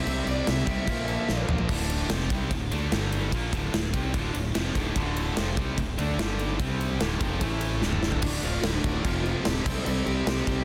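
This hard rock excerpt opens with a stack of guitars at once: a smooth, overdriven lead guitar carries the melody over three picked riff guitars. One riff guitar is scooped and high-gain, another is a double-tracked distorted part, and the third is overdriven, with the last two sitting in the background. A fuzzy, growly fingered bass and a huge arena drum kit join almost immediately, the drums up front with a punchy kick and bright cymbals, driving an aggressive, straight 4/4 pulse at 147 BPM in D minor. The lead and the distorted guitar fall away as the harmony settles on Dm and G5, with drum fills marking the turns into and out of this middle passage, and the distorted guitar returns at 5.0 seconds. The overdriven background guitar stops at 8.2 seconds just as the lead melody comes back, all set in a dense, heavily limited mix with light reverb and a small room ambience.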